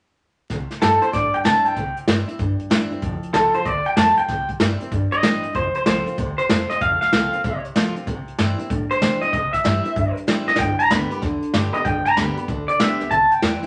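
A swung 190 BPM rockabilly groove in 4/4 drives this rowdy, retro cut from a longer piece in C major. It is anchored by a jazz brush drum kit sitting up front, with a boomy kick and a drum fill at 10.4 seconds. A woody, thumpy pizzicato upright bass holds down the low end while a full-bodied picked steel-string acoustic guitar plays accompaniment over chords moving through C, F and G. From 0.8 seconds a bright, twangy, slightly broken-up electric guitar through a small old amp carries the compressed, lo-fi melody, all wrapped in wet studio reverb and vinyl crackle that dulls the top end.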